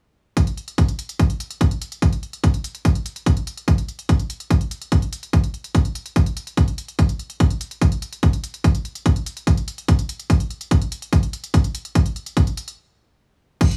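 A straight 4/4 trance pulse at 145 BPM drives this hypnotic drum-only passage, cut from a longer piece. An overdriven electronic kick drum sits heavy and up front, while a layered techno drum kit, also overdriven, adds smooth hi-hats and crash cymbal further back in a dry, close sound. Both parts run from 0.4 seconds, with a stop at 12.8 seconds before the pattern closes out near 13.8 seconds.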